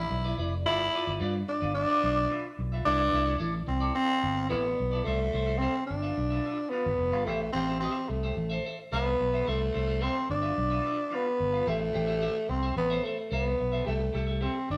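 Glamorous and joyful, this straight-feel disco excerpt sets a growling, breathy tenor saxophone melody with scooped notes up front over a clean, picked electric guitar with phaser and an amped fingered electric bass, all sounding like a band playing live in a stone room with moderate reverb as the harmony moves through rich sixth, seventh and ninth chords.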